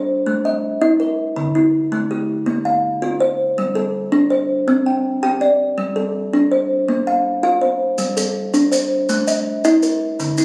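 Southern African traditional music in a rippling, mbira-style interlocking cycle in a straight 12/8, where a woody, hollow-boxed kalimba sits up front with short, bright thumbnail plucks arpeggiating from D3 to G5 over chords that shift from Am through D5, Bb5, G5 and C5, while grainy, mellow maracas join at 8.0 s, all heard in a reverberant hall captured on a phone in the room, as a fragment cut from a longer piece.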